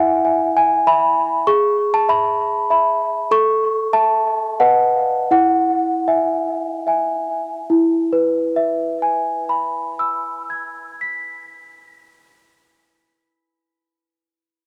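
A solo celesta, bell-like and delicate with a bright, sweet tone from hard felt hammers, sits up front in this tender, dreamy classical lullaby excerpt in E major and 3/4, moving with a rubato feel between 70 and 99 BPM and slowing down from 2.4 to 7.7 seconds before a new section begins, its range spanning E4 to B6 and its sound colored by cassette tape and analog delay within a moderate booth ambience on a home cassette recording.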